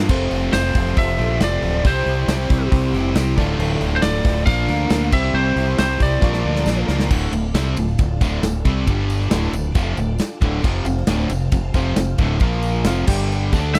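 Brooding and swaggering, this classic rock excerpt in D minor drives along at 136 BPM in a straight 4/4, with a cranked stack guitar, a double-tracked fuzz guitar and a compressed overdriven guitar stacking up the riff over a growling, up-front fingered bass and a punchy big rock drum kit in a bright stone room, which takes a fill from 6.2 to 7.1 seconds. A lightly driven lead guitar with tape echo carries the melody in its slightly broken-up tone until about 6.9 seconds, while a very quiet, barky reed electric piano adds accompaniment, dropping out from 7.1 to 10.6 seconds. Beneath it all a swirling phased string machine holds sustained chords and a distant, jingly tambourine sits in the background, all in a dry, close 1970s-style studio sound.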